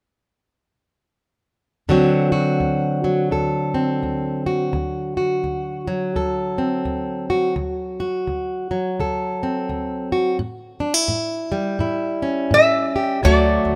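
A fingerpicked, plugged-in jumbo steel-string acoustic guitar opens this laid-back, swaggering slice of acoustic country blues at 1.9 seconds, its full-bodied tone sitting up front as it carries the accompaniment with a swung feel in four. The guitar settles on a D7 chord for a long stretch before moving to A7, giving the passage an easy, unhurried strut. At 12.5 seconds a metal-body resonator slide guitar enters up front with a brief high melody, its nasal, metallic voice picked with fingerpicks. At 13.2 seconds, as the harmony resolves to D, an upright bass joins with a thumpy, woody pizzicato note on gut strings, dark beneath the guitars. Light reverb and a rough home-demo mix lend the fragment a casual, front-porch intimacy.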